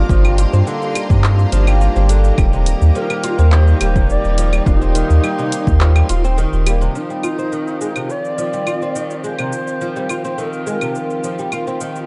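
Up front sits a deep, round sub bass that anchors this mystical, earthy stretch of organic downtempo at 105 BPM in a straight 4/4, cut from a longer piece. A punchy, overdriven electronic kick drives the groove until 5.8 seconds, alongside a deep house kit of cabasa, claves, handclaps and hi-hat, both treated with studio reverb. Over this, a low Native American-style wooden flute carries the airy, chiffy melody with an unsteady vibrato, while a reedy, breathing pedal harmonium and a woody, fretless oud playing arpeggios through a low-pass filter add delay and shimmer reverb. A bright, biting symphonic string section holds sustained chords in the background, and a very quiet twinkling granular texture sparkles above until 7.0 seconds. The harmony moves from Gm7 to Eb, then shifts to F7(no3) at 7.0 seconds, all within a dark production with light reverb.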